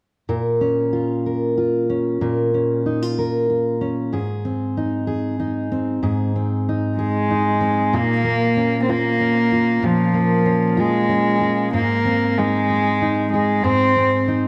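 A wet scoring-stage reverb gives this short fragment of a longer pop piece a spacious, aching glow. In a slow 6/8 at 63 beats per minute in B-flat minor, a dark, full-bodied jumbo steel-string acoustic guitar is fingerpicked up front from 0.3 seconds, with finger squeaks audible as it moves between B-flat minor and A-flat. At 7.0 seconds a single bowed cello takes the melody, its nasal, reedy gut-string tone played in a period style and trailed by tape echo. The harmony keeps to the same two chords as the piece passes into a second section near 7.9 seconds. Both instruments sustain a melancholic mood until the cello falls silent at 14.4 seconds, just before the fragment ends at 14.5 seconds.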